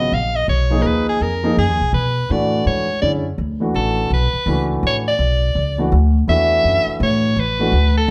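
Heard from further back in a club-like room with a wet reverb, this searching, intense modal jazz piece swings in 3/4 as an edgy, forceful soprano saxophone carries the vibrato-laced solo melody up front, a warm concert grand piano accompanies with deep bass, and a woody, growly pizzicato upright bass thumps beneath, all three playing from the start of the cut to its end at 8.1 seconds.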